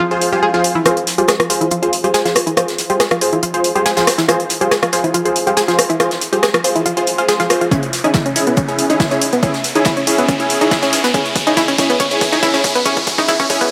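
Driving peak-time techno with a relentless, industrial mood, this excerpt is a build-up from a longer piece. A bright, round sawtooth pluck riff with chorus and delay and a punchy, detuned supersaw stab pump together over an overdriven analog drum machine's hi-hats and rim clicks, while a very quiet, resonant drone sounds only until 0.9 s and a brushed jazz kit with a high-tuned snare sits in the background. From 0.9 s, filter sweeps on the synths and an electronic riser build the tension, and at 7.7 s a distorted analog kick enters with a drum fill as the harmony moves from F minor to D-flat minor, all set in a lush hall reverb.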